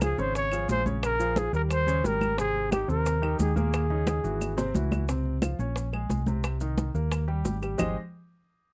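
Afro-Cuban jazz with a sophisticated, danceable mood, moving at a brisk, straight 4/4 pulse in this short excerpt cut from a longer piece. A dark, breathy trumpet carries the melody up front with light vibrato, scooped notes and a whispered, intimate tone, then drops out at 4.7 seconds. Beneath it, a warm grand piano with audible action noise supplies natural-sounding accompaniment, while a hollow-body short-scale electric bass, fingered and amped, gives a round, punchy low end. The percussion blends bright, thin-skinned congas and tight, high-tuned bongos played with soft hands, woody claves set in the background, and grainy, mellow maracas, all captured close and dry. A drum fill from 4.1 to 5.1 seconds leads into a new section with seventh chords, and the whole is framed by close, detailed microphones and light reverb.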